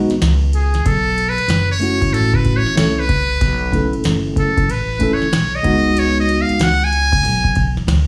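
Vinyl crackle and studio reverb set a smoky backdrop for this cool jazz-hop fragment, cut from a longer piece and swinging its sixteenth notes in 4/4. An upright bass opens with woody, growly plucked notes on steel strings, alongside a clean tine electric piano heard through its built-in speakers, comping on suspended ninth chords that move from C#9sus4 to B9sus4 and back. A booming analog drum machine joins at 0.1 seconds with a deep kick, crisp snare, metallic hi-hats and ride cymbal. From 0.5 seconds a trumpet with a metal mute takes the solo up front, its tone buzzy, thin and breathy with a soft attack and a brilliant edge, phrased in a jazz style. The electric piano drops out at 6.7 seconds, leaving the muted horn, bass and drums to carry on until the trumpet stops at 7.8 seconds and bass and drums close the fragment.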